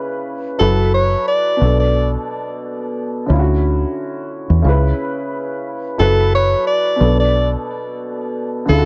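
A lightly swung boom-bap groove in 4/4 carries this moody, dark hip-hop fragment, which opens on a worn, woody upright piano with audible action noise and a slightly detuned, long-sustaining tone, filtered and colored by cassette tape. At 0.6 seconds a round, foam-muted dub bass enters up front, and a breathy tenor saxophone takes a jazz-style solo melody with subtone, vibrato and scooped notes, softened by filtering, tape and an analog delay. The chords cycle through minor sevenths and a Dmaj9, and the whole piece sits in light reverb with the hazy intimacy of a home cassette recording.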